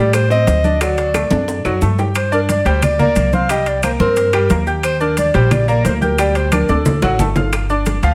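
Recorded close and in fine detail, this short cut from a longer salsa piece sits in a large studio with a moderate reverb that gives the ensemble some air. The mood is passionate and fiery, driven by an upright bass placed up front, its plucked gut strings sounding thumpy and woody. A dark, classical-style clarinet carries the solo melody until 7.4 s, while a present concert grand piano with a brilliant, slightly worn tone, audible action noise and deep bass supplies the accompaniment. In the background, thin-skinned congas, ringing metal-shell timbales, grainy maracas and faint, vintage-sounding claves keep the percussion busy, with tight, high-tuned bongos dropping out at 2.2 s and returning at 7.5 s. The harmony moves through minor-key changes such as Gm, Cm7 and Ebmaj7 before settling on a suspended D and a closing G7, with drum fills marking the ends of phrases.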